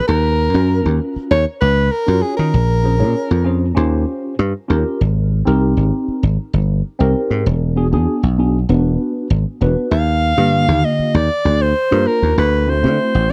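A clear, close-miked soprano saxophone opens this intense, slick excerpt of 1970s-style electric jazz fusion at 98 BPM in a straight 4/4, singing with vibrato and scooped notes until 3.6 seconds and returning at 9.9 seconds, over a punchy, foam-muted thumbed slap bass and a worn, slightly out-of-tune tine electric piano with phaser, moving through rich chords from Ebm9 to Abmaj9 and D9 in a dry, intimate studio sound.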